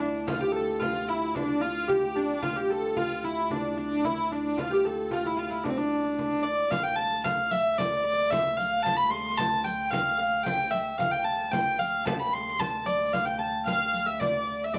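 Mysterious and ancient in mood, this excerpt of a medieval dance moves at 112 BPM in a straight 2/4, set in D minor. A dark, woody hurdy-gurdy carries the melody up front, its wheel-bowed tone close and edged with an airy bow sound. Beneath it a concert harp plays a thumb-plucked second line that rings warmly, while a rich viola da gamba holds a low D drone with light vibrato and a gentle, intimate attack. A small, bright frame drum struck with hard hands joins at 0.3 seconds, and at 6.7 seconds a riq adds bright, band-limited jingles from the background as the dance section repeats. The band sounds as if playing live in one small room with modest reverb, and lossy compression artefacts colour the recording.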